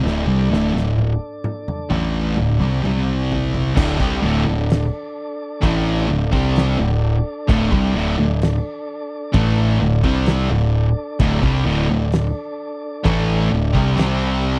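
A dry, close 1970s-style studio sound frames this sludgy, hypnotic stoner and doom metal excerpt at 65 BPM in 4/4, where two thick fuzz guitars churn a riff over D5 and C5 chords, a growling, punchy overdriven bass sits up front, an oversized low-tuned drum kit with boomy kick, fat snare and dark cymbals opens with a fill, a mellow, round tonewheel organ holds sustained chords through a slow rotary speaker with audible key click, and a bright, double-tracked overdriven guitar joins the riff at 3.8 seconds.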